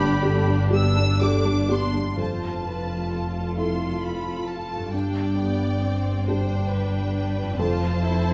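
A slow, rubato 6/8 pulse of about 40-46 BPM carries this hopeful, uplifting cinematic film-score fragment in F lydian, cut from a longer piece. Intense, lush violins sing the high melody over a second violin line, while rich violas, a felt-muted upright piano with audible action noise, and a very quiet, ringing harp spinning arpeggios fill the middle. Cellos and double basses anchor the low end, and a clear oboe sounds only briefly at the opening before 0.7 seconds, all bathed in a wet scoring-stage reverb as the harmony settles from G onto Fmaj7 at 2.2 seconds.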